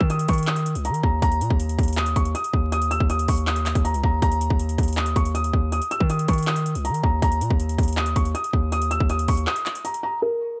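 A felt-muted upright piano opens on Eb5 over a bed of vinyl crackle, its soft, mellow tone filtered dark and intimate, with the thick felt and action noise close to the ear, as a distorted 808-style bass and a trap drum kit start together in this dark, melancholic hip hop excerpt at 160 BPM in a half-time feel. The 808 is heavy and aggressive, its sine body roughened by a noise layer with a fast attack and decaying tail, while the overdriven drums pair a hard-clipped kick with metallic hi-hats and handclaps that carry a small-room character. The bass drops out at 9.5 seconds for a short break, the drums stop at 10.0 seconds, and the piano rings on alone until 10.6 seconds.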